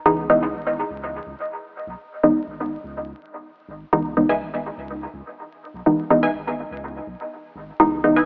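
A muted, detuned sawtooth chord stab sits up front through this cavernous dub techno excerpt, its filter-plucked hits treated with chorus, phaser and dub echo as it holds a single minor-ninth chord in a steady, straight four. Beneath it, a round analog bass built from triangle and sine tones runs from 0.1 s to 8.3 s, sustained and dark, with a filter sweep coloring its low notes. At 4.3 s a second, brighter filtered stab enters higher up as a riff, its wave-folded pulse and sawtooth tones carrying phaser and dub echo. The recording is dry and gritty with light digital ambience, overlaid with vinyl crackle and an AM radio character that deepens the cavernous, deep mood.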